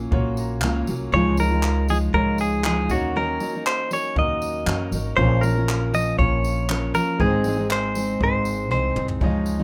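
Acoustic pop with a carefree, heartfelt mood, this excerpt moves at 119 BPM in a straight 4/4 and is cut from a longer piece. A clear concert grand piano sits in the background with long sustain, opening with a short fill before settling into accompaniment beside a dark, full-bodied jumbo steel-string acoustic guitar, whose picked strings carry audible finger squeak. Underneath, a woody, thumpy pizzicato upright bass anchors the chords, which move from Gbmaj7/Bb through Dbadd9, Ebm7 and Bbm to Ab. A jazz brush kit with a boomy kick, medium-tuned snare, tambourine, toms and handclaps enters at 0.1 seconds and closes with a fill near 8.7 seconds. Up front, a bright, twangy, compressed clean electric guitar recorded direct carries the melody from 1.1 seconds, all within a moderate small-room reverb.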